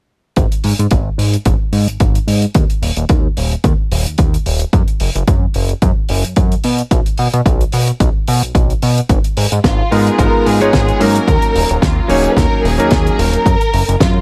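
A small-room reverb frames this sleek, cosmic nu-disco cut, where a fat, detuned analog bass with tube saturation and a punchy, tape-warm electronic kick sit up front over a dry, damped 70s kit of hi-hat and fat snare, before a lush bowed violin section with vibrato, 12-bit sampler grit and dub echo arrives at 9.6 seconds and a vintage electric grand piano with a clangy low end and sidechain pumping joins at 9.9 seconds.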